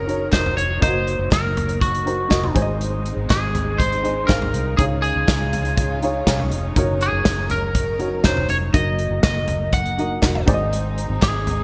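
A twangy, slightly broken-up lead guitar carries the melody up front in this hopeful, uplifting piano-driven pop excerpt at 121 BPM, over a woody, slightly detuned upright piano with subtle chorus, lush bowed strings in the background, a dark, round foam-muted electric bass, an airy, polished country drum kit with a punchy kick, and very quiet, distant group handclaps, all set in a bright 1980s-style digital production with a lush hall reverb as the chords move through Gb6, Ebm/Gb, Ab and Dbadd9.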